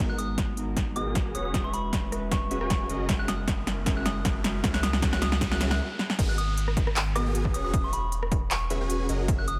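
Emotional, bittersweet future bass cut from a longer piece, in a swung half-time feel, where a dark, clean electric guitar in the background, a huge detuned supersaw riff under a filter sweep, a deep saturated sub bass and a soft FM bell melody with chorus, phaser and delay all pump to the sidechain. Very quiet risers and downlifters and a drum fill on a punchy, overdriven big-room kit with crisp hats and handclaps, plus an electronic kick, build toward a brief stop at 5.8 seconds, when the guitar drops out, before the drop lands at 6.2 seconds in light digital ambience.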